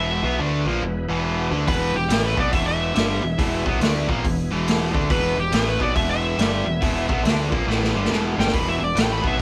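Blues rock in a power-trio and southern rock vein, this driving, gritty excerpt swings at 140 BPM in 4/4, sitting in E mixolydian on an E chord. A bright, overdriven, double-tracked electric guitar riff sits up front from E2 to D4, underpinned by a growling picked bass with an overdriven, direct-and-amped tone between E1 and D2. Above them, an overdriven slide guitar played with fingerpicks carries the melody from G4 to B5, while a thick, very quiet tonewheel organ holds sustained chords through a slow rotary speaker with chorus vibrato. The vintage acoustic drum kit joins at 1.7 seconds with a punchy kick, medium-tuned snare and hi-hat, its rolled-off top giving a mid-forward feel, and it plays a fill from 7.7 to 8.5 seconds. The band sounds like it is playing live in one room, with moderate studio reverb.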